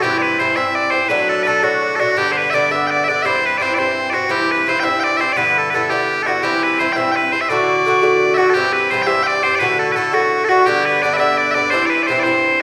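A rollicking 6/8 jig at 113 BPM drives this bright Celtic folk excerpt, cut from a longer piece. Piercing bagpipes carry the continuous melody up front from the start to 12.6 seconds, joined throughout by a picked Irish bouzouki whose metallic double strings supply accompaniment over a cycle of C, D and G chords. The same section plays twice, with the second pass starting at 8.5 seconds, and a wet recital-hall reverb surrounds the pair with the resonance of a church or concert hall.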